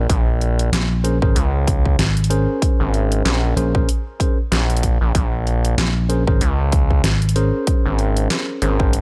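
A dry, upfront excerpt of swaggering, playful glitch hop at 95 BPM in Bb minor with a swung sixteenth feel, where a gritty, saturated sawtooth synth bass growls from the start over a punchy overdriven electronic kick and a dubstep kit with a deep snare and hi-hat, a round, amped vintage slap bass enters at 0.7 seconds, and clean tine electric piano stabs through a combo amp arrive at 1.0 seconds with sidechain pumping and delay over a Bbm9 chord.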